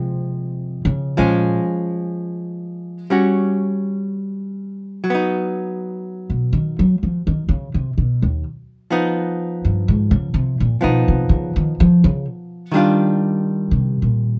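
Romantic and tender, this slow swung jazz ballad at 62 BPM, cut from a longer piece, features a woody, pizzicato upright bass taking the solo up front for the full 14.4 seconds, while a dark, clean, picked hollow-body archtop guitar accompanies through chords such as Dbmaj7, Bbm7 and Ebmaj9, all set in light reverb with a dusky, warm production.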